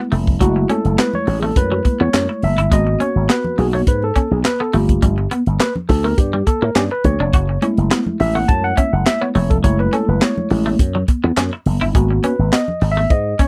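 A worn, slightly out-of-tune tine electric piano and a bright, clean semi-hollow electric guitar open this excerpt of early-eighties boogie funk at 0.0 seconds, with the piano taking a solo that runs the full 13.5 seconds, sounding up front through its built-in speakers. At 104 BPM in a straight 4/4, the piece moves in F# dorian with a funky, danceable mood, its harmony shifting from F#m9 to G#m9 and Gm9 before returning to F#m9 and G#m9 again. The picked, compressed guitar riff shimmers with analog chorus, while a punchy, growly slap bass run through an envelope filter drives the low end from 0.1 seconds. A tight funk drum kit, dry and polished with a high-tuned snare, tight kick, hi-hat and handclaps, sits prominently in the mix alongside very quiet, high-tuned congas played with soft hands. The close, dry 1970s-style studio sound carries just a touch of light reverb.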